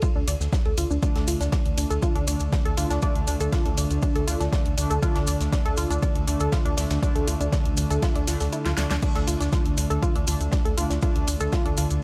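A steady, straight pulse drives this hypnotic, cinematic melodic techno cut, built on a punchy, up-front electronic kick layered with a deep house kit's fat snare, hi-hat and crash, while an acoustic studio kit's high-tuned snare and ride sit warm and rolled-off in the background beside grainy, close and dry maracas. Underneath, a round, dark analog bass holds a sustained low note, breathing with sidechain pumping. An analog pluck spins detuned sawtooth arpeggios with a noisy, bright edge, and a filter sweep runs across it from start to finish, colored by chorus, tape echo and cassette grit. From 1.0 seconds, nasal, brassy analog synth stabs with vibrato, chorus and tape echo join in, also breathing with sidechain pumping. Around 8.5 seconds the kick drops out briefly as a drum fill at 8.7 seconds carries the groove back in, all within a small room ambience, in what is cut from a longer piece.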